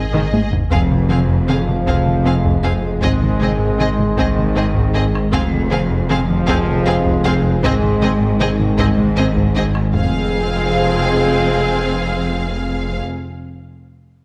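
A dark, lush blend of orchestra and electronics sits in a moderate scoring-stage reverb, in a brooding, vast F minor cue at a slow 52 BPM in 6/8, moving between Ab and F minor chords. Bowed violins carry a vibrato-rich melody over a second violin line, while background violas fill out the middle, expressive cellos and woody double basses thicken the low end, and soft-attack trombones and a tight, distant French horn section hold sustained chords. Beneath them a saturated, thick sub bass and a round analog bass riff underpin heavy, compressed taiko drums that open with a fill and stop at 10.1 seconds, just after the riff ends at 9.9 seconds in this excerpt from a longer piece.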